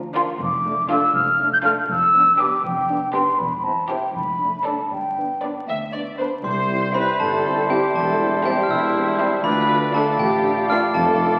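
Set in 6/8 at 80 dotted-quarter beats per minute, this playful, whimsical film cue in C major is a short cut from a longer piece, carrying a quirky, storybook charm. From the opening moments a bowed string body sets the scene: rich, lush cello and double bass sections hold the low end, a clear, focused viola section supplies accompaniment, a smooth violin section carries the melody in the background, and a second, more distant violin section adds a supporting line, all with vibrato. Floating up front, an airy, hollow concert flute with a soft attack traces a high second line, while a mellow, close-miked French horn section sustains chords underneath. At 6.4 seconds the texture brightens as a sparkling, bell-like glockenspiel struck with brass mallets rings out the melody up front, joined by a roomy oboe, a very quiet, distant clarinet, a present bassoon in the background, and a soft-edged tuba reinforcing the bass. 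The harmony moves through Dm/F, G7/F and C/E before settling on C, then drifts toward Dm near the close. The whole cue sits in a generous scoring-stage reverb and is colored by the crackle of a very old 78 rpm record, lending it a nostalgic, antique patina.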